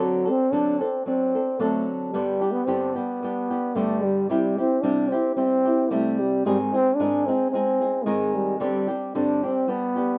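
Mexican folk mariachi at 111 BPM in a straight 4/4, festive and proud, in which a close-miked solo trombone with a soft attack carries the melody in classical style while an up-front fingerpicked acoustic flamenco guitar accompanies, both warm and bathed in light reverb, moving from D7 through G and C to Ab before resolving from Gsus4 to G in this short 10.2-second excerpt from a longer piece, tuned to A4 = 439 Hz.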